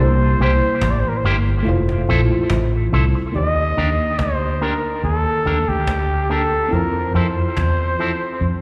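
Heard as a live gig through the venue's PA with the reverb of a recital hall, this tender, romantic lovers rock reggae fragment sets a breathy, up-front flugelhorn melody with light vibrato and dub echo over a round, warbling FM electric piano with chorus, a dark, foam-muted fingered bass, twangy envelope-filtered guitar stabs entering at 0.4 seconds, and a woody cajon played with soft hands and faint snares.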